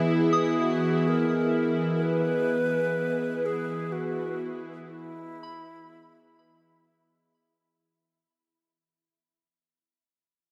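Ambient music in free time and E lydian, this weightless, serene fragment rests on a single Emaj7 chord held by a smooth, chorused analog pad up front. Alongside it sits a bowed-like, tense drone with a noise layer, and a soft, warbling FM synth bell traces high arpeggios through chorus, shimmer reverb and delay. An airy alto flute with vibrato sings the melody up front, also washed in shimmer reverb and delay, until it stops at 6.7 seconds, while a huge, wet reverb surrounds the whole and a fade-out runs from 0.1 to 7.7 seconds.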